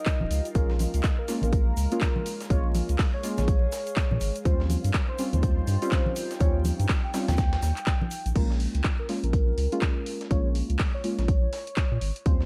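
A punchy, up-front electronic kick anchors this smooth, mellow deep house excerpt in Bb dorian at 123 BPM with swung 16ths. Around it sit a round, dark analog bass with tube saturation and sidechain pumping, detuned chord stabs with tape echo moving through Eb9, Bbm7 and Eb13, and a velvety sawtooth lead melody with chorus and vibrato. A house kit of crash, handclaps and hats plays alongside a gritty, pitched-up breakbeat sampler kit in the background, while damped congas, a grainy tube shaker, a silky string machine and a nostalgic, warbling lo-fi pad all drop out by 8.4 s, leaving a dry mix laced with vinyl crackle.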